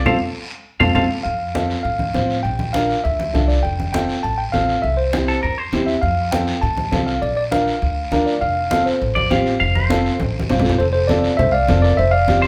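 A bright, compressed semi-hollow electric guitar leads off with a short, clean solo over a band accent, and the tine electric piano takes the melody at 1.2 seconds in this sunny, joyful cumbia at 201 BPM in F major, while the guitar returns in brief phrases over a boxy upright piano with audible action noise, a woody pizzicato upright bass, ringing low-tuned congas and a raspy guiro, the band heard playing together in one room with wet, large studio reverb.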